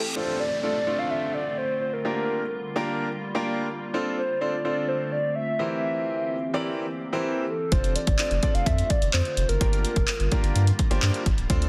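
Straight 4/4 dance-pop, confident and bittersweet, opens with an electronic reverse cymbal and downlifter over a glassy, ethereal FM pad pumping beneath a hollow, woody clarinet-like synth lead with chorus, vibrato and digital delay and a clear, up-front grand piano, before a punchy analog drum machine of kick, handclaps and hi-hat, re-recorded in a large room, enters together with a thick, saturated sub bass at 7.7 s in a dense, heavily limited mix with light reverb.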